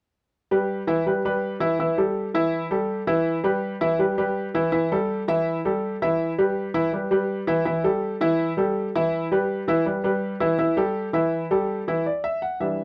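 A solo concert grand piano opens at 0.5 seconds, playing a festive, danceable Latin figure at a brisk 164 BPM in a straight 4/4. It alternates between E minor and A chords throughout, settling on an E minor seventh at 12.1 seconds, ranging from E3 up to F#5. The piano's tone is warm and worn, with a deep bass, short sustain and a present, up-front placement. The sound is a dry, close studio recording in a 1970s style, carrying a moderate booth ambience. The piano stops at 12.8 seconds in this fragment, which is cut from a longer piece.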